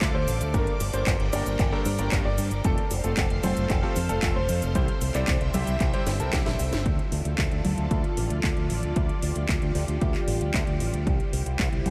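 A punchy, up-front fingered electric bass with an envelope filter drives this nostalgic, bittersweet italo disco passage, cut from a longer piece, alongside an overdriven electronic kick and a house kit of cracking snare, metallic hi-hat, handclaps, congas and cabasa that were re-recorded in a large room. Lush sawtooth string-machine chords with a slow attack and ensemble chorus sustain throughout, while an intimate concert grand piano with audible action noise carries the melody through analog chorus and delay, and a clangy, cutting electric grand piano adds tape-echoed stabs in the background; both pianos stop by 6.7 seconds, as a drum fill leads into the next section at 6.9 seconds. The dreamy mix is soaked in a huge ambient reverb.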